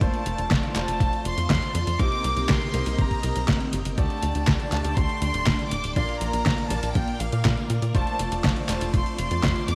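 Bright 1980s-style digital production with light reverb and a dusting of vinyl crackle frames this danceable, bittersweet italo disco excerpt at 121 BPM in a straight 4/4. A close, reedy chamber violin section with light vibrato carries the melody through a digital delay, floating over lush, vintage string machine chords treated with phaser and ensemble chorus, while a brilliant grand piano adds stabs in the background. Underneath, a punchy, dark sawtooth sequencer bass drives up front beside an overdriven, detuned 8-bit drum machine of handclaps, hi-hat and gated-reverb snare, and a gritty, thumpy electronic kick that stops at 9.5 s as the chords move from F6 through Cm7, Dsus4 and Bb back to F6.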